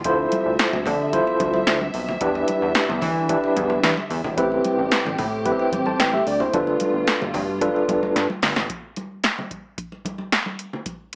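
Muted, veiled strings, a glossy chorused synth bass and a dry analog drum machine with a deep kick, punchy snare and metallic hats open this danceable, slick early-eighties boogie funk cut at 111 BPM, with a gritty, barky overdriven electric piano with fast tremolo entering up front over a Dm9, Em7, Am7, G9 progression. Bright, damped congas with hard hands sit in the background, and the track has a light reverb and a small-speaker sound. A drum fill begins at 8.2 seconds, the piano drops out at 8.3 seconds, and strings and bass stop at 8.7 seconds, leaving drums and congas to carry the final bars until the drums stop at 11.2 seconds.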